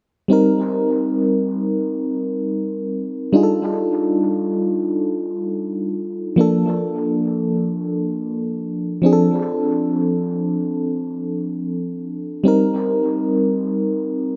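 Moody and sensual, this R&B fragment features a dark, full-bodied FM electric piano with tremolo and a noise layer, playing alone up front through dub echo and a moderate plate reverb as it moves through Cm7, F13, Bbmaj7 and Dm7 before returning to Cm7 at 12.4 seconds.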